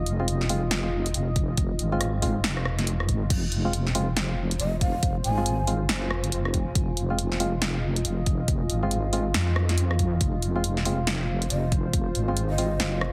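A half-time groove with a swung sixteenth feel drives this meditative, heavy deep dubstep excerpt, built on an up-front house drum kit with a punchy snare, crash, hi-hat and rim click, joined by a layered electronic kick from 1.4 seconds. A detuned, sawtooth-edged wobble bass anchors the low end over a single F minor chord, while a moody, warbling ambient pad sustains alongside, and dark, hollow organ stabs carry cassette-tape grit and dub echo. A breathy bamboo shakuhachi with vibrato and chiff surfaces in the background at 4.6 and 11.5 seconds, trailed by dub echo, and the whole mix sits in spring reverb with a heavily compressed, radio-like sound.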